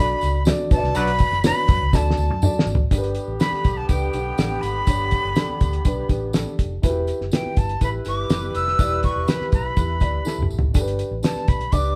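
Uptempo 1960s-style soul at 122 BPM in a straight 4/4, this short excerpt has an uplifting, joyful mood, moving from D and B minor into a passage built on G and E minor. A breathy, bright flute carries the melody in its upper register, up front with vibrato and a crisp, chiffy attack. Beneath it, a dark upright piano adds woody, boxy accompaniment with short sustain, while a vintage fingered electric bass sounds round and foam-muted through its amp. The cloth-damped drum kit is the most prominent element, dry and thuddy with a fat snare, a tight kick and a rolled-off top, playing fills from 1.9 to 2.9 seconds and again around 10.3 seconds, with a jingly tambourine sitting close but in the background. A tight, clear horn section joins at 0.9 seconds with a smooth, lightly vibrato second line, and the whole band sounds like it is playing live together in one large studio room with moderate reverb.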